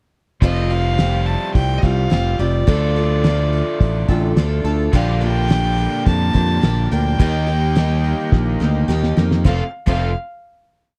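A short, nostalgic open-road piece of folk rock and heartland rock opens with a nasal, gut-toned fiddle melody over shimmering twelve-string acoustic guitar, ringing overdriven electric guitar chords, a punchy dotted bass figure and a cloth-damped, thuddy drum kit with a fat snare, joined at 4.9 seconds by a reedy accordion pad in the background before a drum fill at 8.3 seconds leads to a final F chord, all in a dry, close 1970s-style studio sound.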